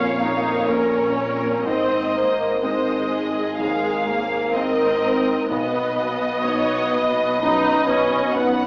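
A small-speaker sound colours this brief excerpt, set in a church or concert hall with a wet, reverberant recital-hall ambience. It is a cinematic, emotional film score for orchestra, uplifting and hopeful in mood, moving at 63 BPM in 4/4 with a rubato feel. Up front, a muted violin section carries the melody con sordino with a veiled, vibrato-rich tone, while a second violin line beneath it has a soft attack and smooth top. A lush muted viola section and a felt-muted upright piano, mellow and intimate in the background, fill out the accompaniment as a very quiet concert harp adds bright, ringing thumb-plucked arpeggios. Muted cellos and a distant double bass section hold the bass, and the harmony moves from Bbm to Abadd9 at 1.7 seconds and on to B at 5.5 seconds.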